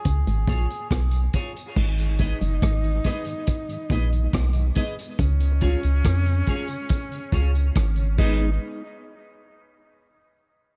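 Dub reggae with a meditative, heavy mood, this excerpt opens on a brief break where a reedy, breathy melodica note rings through dub echo, joined at once by a fingered, hollow-body semi-hollow guitar riff in the background, a deep, round sub bass up front and a lo-fi, muffled vintage drum kit with dark cymbals and a tight kick. A twangy clean electric guitar with analog chorus enters at 0.5 seconds, then at 1.8 seconds a punchy, close-miked tenor saxophone takes a second line with vibrato, soon backed by a flute-like tonewheel organ with key click sitting in the background. The echo-heavy mix moves between C# and G#m, and the parts fall away by 8.6 seconds as the excerpt moves into its closing section.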